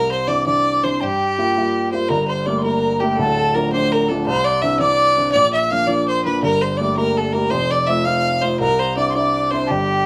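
A moderate studio ambience surrounds this short cut from a longer Celtic jig, played live by the band in one room. The tune sits in G dorian at 110 BPM in 6/8 with a straight feel, tuned to A4 = 436 Hz, and the mood is driving, dark and lively. Up front, a single bowed fiddle carries the melody with a clear, intense tone, light vibrato and a smooth top. Behind it, a breathy metal whistle plays a second line higher up, with a crisp, chiffy attack and vibrato, sitting in the background. A warm, woody, polished upright piano, present and up front with long sustain, gives the accompaniment, moving through chords such as Cadd9, Gm7, Dm, Bb and F. All three parts play throughout the 10.1 seconds, and the opening section returns at 2.1 seconds.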